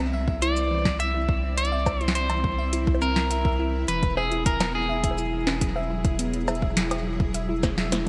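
Bright 1980s-style digital production in a lush hall sets this glitchy, intricate IDM excerpt, where a clean, picked electric guitar carries the melody with delay over a blurred, evolving granular pad, a ringing harp-like synth pluck playing chorused, delayed arpeggios, and a round, dark analog bass, all driven by an overdriven deep electronic kick and an analog drum machine of punchy snare, metallic hi-hats, shaker, bongos and cowbell in gated reverb, with a drum fill arriving at 7.6 seconds and the kick dropping out at 7.9 seconds.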